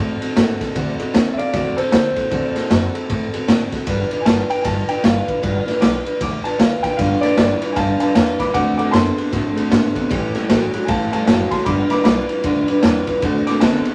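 Vinyl crackle and a moderate studio reverb frame this upbeat, rollicking rockabilly excerpt, which swings along at 154 BPM over a D7, G7 and A7 progression. A clear, vintage upright piano with long sustain carries the melody as a solo throughout, backed by a warm picked steel-string acoustic guitar, a thumpy pizzicato upright bass with gut strings, and an up-front, gritty garage drum kit with a boomy kick, snare and ride in a pumping small room. At 7.0 s a twangy, slightly broken-up electric guitar through a small old amp joins with a lo-fi riff.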